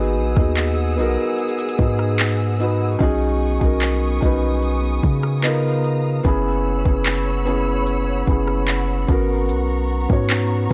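A felt-muted upright piano anchors this dreamy, romantic contemporary R&B excerpt, its thick felt giving a soft, dark, intimate tone with the mechanical action noise audible up close. Moving at 74 BPM in B major, the chords drift from Emaj9/G# through B69 and C#13 to F#7sus4 and G#m11, lending a lush, yearning colour. Beneath the piano, a long sustained 808-style bass supplies deep, sine-like notes with a fast attack that decay mellowly, while a studio string section holds bowed chords further back, played sul tasto with vibrato and a smooth top, pumping gently from sidechain compression. An electronic drum kit enters at 0.4 seconds with a soft kick, crisp hi-hats, handclaps and rim clicks, its overdriven edge placed up front. The whole sits in a small room ambience with a dark, warm production that keeps the mood hushed and close.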